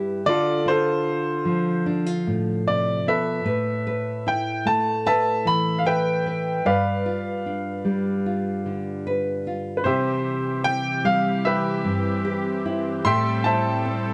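A clear, woody upright piano carries the melody up front in this heartfelt, hopeful acoustic folk-pop ballad at 75 BPM in C major, set over a fingerpicked nylon-string guitar with fresh strings, while a brassy, detuned analog pad with chorus and vibrato enters at 9.8 s to hold sustained chords as the harmony moves from Dm7 through G7 to Cmaj7 and Am7 in light reverb.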